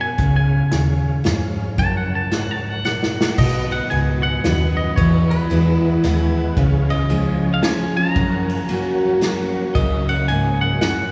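Honky-tonk and classic country in a lilting, swung waltz time, sunny and heartfelt, with a bright, twangy electric guitar carrying the melody and taking a clean solo over the opening 3.4 seconds as a drum fill closes it out. A full-bodied picked dreadnought acoustic guitar, a dark, round foam-muted electric bass and an acoustic drum kit played with bundle sticks anchor the groove, while a smooth tonewheel organ with key click, chorus vibrato and slow rotary speaker adds a fill around 5.8 seconds. From 3.4 seconds a very quiet, lush bowed string section enters with expressive sustained chords, and the whole excerpt sits in a drenched cathedral-like reverb.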